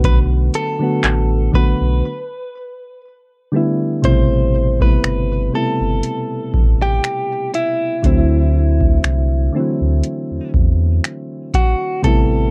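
A slow, moody contemporary R&B groove at 60 BPM opens at once with all four parts together: a booming analog drum machine with a deep kick, metallic hi-hat, finger snaps and handclaps, a full sine-and-triangle sub bass doubled at the octave, soft electric-piano-like synth keys, and a clean, direct-recorded electric guitar carrying the melody. The lightly swung 16th-note feel in 4/4 and the A dorian harmony give it a longing mood, moving through Bm7 and G6 before settling on Am7 and D9. The keys are round and mellow, their decaying notes shimmering with chorus, while the picked guitar sounds compressed and scooped, set in spring reverb and digital delay. A break arrives at 2.0 seconds, and the drums stop at 12.3 seconds, just before the rest of this short cut from a longer piece ends. The mix is dry and up front, colored by worn, warbling cassette tape with a warbly pitch drift that lends the whole passage a vintage haze.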